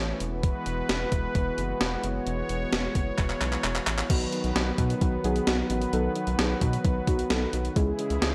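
The recording is dry and gritty, with a light digital ambience, and it sounds cut from a longer synth-pop piece in straight 4/4 with an upbeat, bright mood. A bold, brassy analog pad of detuned sawtooth tones holds sustained chords up front under a chorus effect, moving from Eadd9 to B and then C#m. Beneath it, a rubbery square-wave bass gives a bouncy, hollow low end with a resonant filter pluck. A sampler-style 80s drum machine sits forward, with a thumpy kick, gated reverb on the snare, handclaps, hi-hat and crash, and a fill from 3.2 to 4.1 seconds. At 4.1 seconds, muted, felt-like synth keys enter as soft, intimate accompaniment, their triangle and sawtooth tones touched with a noise layer and chorus.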